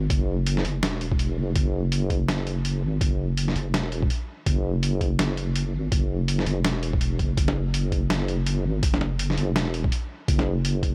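Tense and cinematic, this half-time drum and bass excerpt with a swung sixteenth feel opens on a deep, dark, detuned wobble bass with chorus sitting up front, joined at 0.1 seconds by a gritty, pitched-down boom bap sampler-style kit of hi-hat and medium-tuned snare, also up front, and a thumpy, tape-warm electronic kick re-recorded in a small room, in a dry mix with little reverb.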